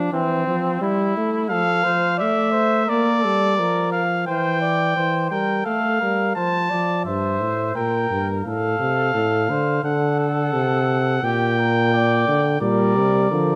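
A trumpet carries the melody up front in its high register, entering at 1.5 seconds in this stately, joyful passage cut from a longer imitative canzona for brass ensemble in straight 4/4. A flugelhorn plays the second line from the very start with vibrato and a distant, roomy presence beneath the trumpet. A close-miked trombone supplies the accompaniment, stopping at 7.1 seconds and returning at 12.6 seconds for the final moments. At 7.1 seconds a bass trombone takes over the low end with a soft attack and light vibrato, its warm tone anchoring the second half. A moderate recital hall reverb surrounds the ensemble, giving the classical playing a ceremonial glow.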